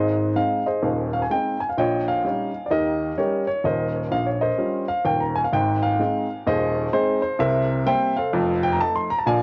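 A cassette home recording in a small, moderately reverberant room captures this exuberant, swinging 9.4-second stride jazz fragment at 128 BPM in Ab major, tuned to A4 = 444 Hz, where a solo upright piano, woody, intimate and up front with audible action noise and colored by cassette tape and analog delay, spans Eb1 to C6 over changes moving from Ab through Eb7/Bb and Eb13 back to Ab before C7 and F7.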